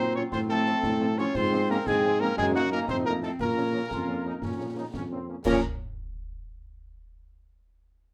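A mellow, vintage-toned tuba sits up front in this short cut from a military-style march for wind band, anchoring the bass in Bb minor at 117 BPM in a straight 6/8. A smooth-topped cornet carries the melody with light vibrato in a resolute, martial mood. Behind it, an airy, tongued piccolo with rolled-off highs, a dark, distant woodwind section and a vintage-sounding euphonium add second lines. A very quiet French horn section fills in the accompaniment, while a bright, tight trombone section holds sustained chords. Concert snare, bass drum and clash cymbals with bright cymbal tone enter at 0.3 s in a live room. Moderate studio reverb gives the band a roomy space as the harmony moves through F/A, Fm/Ab and Ebm/Gb to F7 before settling on Bbm, and a new section begins at 5.5 s just before the cut.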